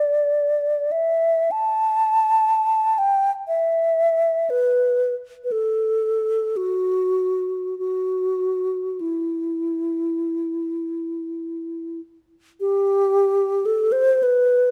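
A lone alto flute opens this short classical excerpt, its hollow, airy tone placed up front and captured by close, detailed microphones. The piece is free and expressive, in E minor, moving in a rubato 4/4 at a tempo that drifts between 42 and 64 BPM, and the mood is lonely and yearning. The flute ranges from E4 to A5, its sound marked by vibrato, a crisp attack and lifted highs. Light reverb gives the unaccompanied line a little space around it. Around 12.6 seconds the music moves into a new section, which carries on until the fragment ends at 14.7 seconds.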